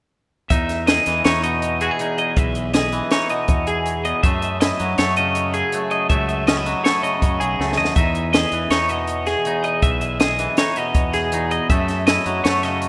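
In a straight 5/4 at 161 BPM, a compact cocktail drum kit with a punchy kick and high-tuned snare drives this bright, intricate math rock and midwest emo excerpt in E major, with a quick drum fill at 7.6 seconds. A twangy electric guitar supplies spring-reverbed accompaniment while a compressed twelve-string electric guitar spins bright arpeggios through spring reverb and tape echo, over a round, fuzz-overdriven fingered bass. The chords move from Emaj7 to F#m9 and back to Emaj7 before closing on F#m7, all in a rough home demo mix with lush hall reverb and small room ambience.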